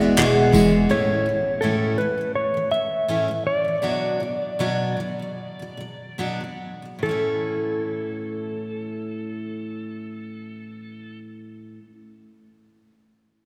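A gently swung 4/4 pulse, with a light 16th-note lilt at 70-84 BPM, gradually slows from 0.9 to 7.0 seconds in this carefree, easy-going acoustic pop excerpt in A major, tuned slightly below standard pitch. A round, hollow-body fretless electric bass sounds an E at the very start and stops at 0.9 seconds, while a brief burst of handclaps and tambourine in a pumping room flickers past in that opening moment. A bright, full-bodied, jumbo steel-string acoustic guitar is picked up front throughout, carrying the harmony from an opening Eadd9 into A, then Bm, and back to A at 7.0 seconds. Over it, a dark, clean, compressed lap steel guitar sings the slide melody in the upper middle register, also sitting up front. A cathedral-like reverb with a long, lingering tail places the whole performance in a church or concert hall, giving the relaxed tune a spacious glow.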